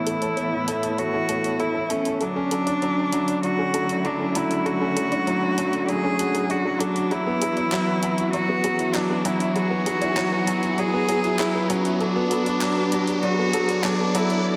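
Bathed in a wet scoring-stage reverb, this tender, hopeful piano and strings electronica cut is one long build-up, moving through A, Dmaj7, Eadd9 and Bm7. A woody, intimate upright piano riff with audible action noise and long sustain sits up front beside a nasal, boxy solo cello melody with light vibrato. Meanwhile, an expressive bowed string section with portamento holds lush sustained chords in the background under a filter sweep, a very quiet, mellow chorused pluck plays arpeggios, a deep house drum kit with handclaps and filtered hi-hats keeps a straight 4/4 pulse, and an electronic riser enters at 5.6 s.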